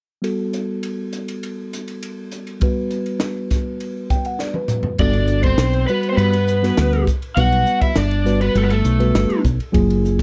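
A mellow tine electric piano opens this bright, slick jazz fusion fragment at 0.2 seconds over a crisp, up-front drum kit with a high-tuned snare and punchy kick, both adding fills just before 5.0 seconds, when a growly, woody fretless bass arrives alongside a dark, lo-fi overdriven lead guitar and a double-tracked, crunchy second guitar line, heard in a dry, close mix.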